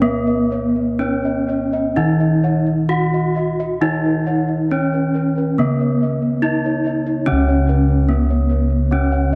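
In a straight 4/4 pulse at 60-73 BPM, this serene, shimmering Javanese gamelan excerpt, tuned to A4 = 437 Hz, sets a bright, horn-mallet bronze metallophone melody with paired-tuning beats and a touch of tape echo up front, over a lower bronze metallophone accompaniment and round, beating bossed gongs holding the bass. Higher, dark and smooth bossed gongs play arpeggios up front, while a mellow metallophone struck with padded disc mallets plays arpeggios further back, all sounding together from the start to 9.4 seconds as the passage moves into a new section at 7.3 seconds. A moderate spring reverb and a dark production frame the ringing bronze tones.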